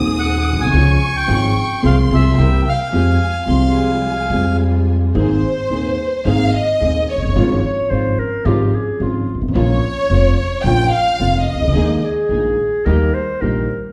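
Heard from further back in a wet, large studio room, this passionate, tense tango fragment moves at 109 BPM in 4/4 with a rubato feel, beginning in F minor before turning to Ab major at 5.2 s. A reedy, airy bandoneon states the melody from 0.2 s, its bright tone doubled by a slapback echo. Beneath it, a dark, intimate concert grand piano supplies vintage accompaniment with deep bass and audible action noise, while a woody, thumpy pizzicato upright bass on gut strings anchors the low end. A dark studio string section adds bowed, vibrato-laden stabs in the background, and a lush symphonic violin section sings a smooth, expressive second line before taking a solo from 5.2 s. A clear, classical-style clarinet enters up front at 7.7 s with its own second line as the harmony moves through Db/Ab, Bbm and Ebsus4 to a closing Eb.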